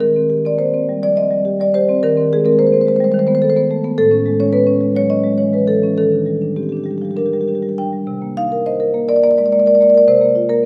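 Contemporary classical writing for solo marimba played with medium mallets, this flowing, playful excerpt in Eb lydian moves in a rubato 7/8 at 210 BPM counted in eighths, the warm, up-front marimba ranging from A2 to G5 through chords such as Eb6, Amaj7 and Ebmaj7 before shifting to Cm7 at 8.1 seconds, all bathed in the wet reverb of a recital hall.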